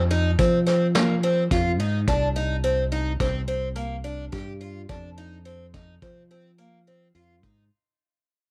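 A picked twelve-string acoustic guitar and a fingered electric bass open this brooding, intricate progressive instrumental together, with a brush drum kit joining at 0.1 s. The piece moves at 106 BPM in an uneven 5/4 with a straight feel, and the harmony runs from Fm7 to Cm9 at 2.1 s, then to an F7 with its third omitted at 4.9 s. Up front, the parlour-style twelve-string plays shimmering, octave-doubled arpeggios between Bb3 and G4, its boxy tone carrying audible finger squeak. The bright, direct bass sits equally forward, growly and punchy as it anchors the low end between C2 and F3. Slightly behind them, mid-forward in the mix, the vintage kit brushes a medium-tuned snare, punchy kick and hi-hat with a rolled-off top, all in light reverb and small room ambience. The whole passage, tuned to A4 = 438 Hz and cut from a longer piece, fades out across its 7.7 seconds.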